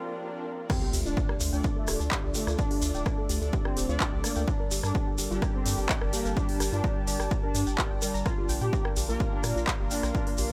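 A punchy, tape-warm electronic kick sits up front from 0.7 s, driving this dark, melancholic melodic techno excerpt at 127 BPM in 4/4, where a very quiet swell leads into the drop alongside an impact, with a round, deep analog bass, a techno kit of smooth hats, handclaps, rim clicks and crash, and a grainy acoustic shekere. Above them, an expressive sawtooth lead with vibrato, ensemble chorus and delay carries the melody, while a soft, detuned pluck arpeggiates with a moving notch filter, and bold, vintage synth brass stabs enter at 1.5 s. A smooth analog pad, a lo-fi, nostalgic tape-like texture and sidechain pumping on the synths fill out a dry mix that moves from Dm7 through Gm to Bb, tuned to A4 = 436 Hz.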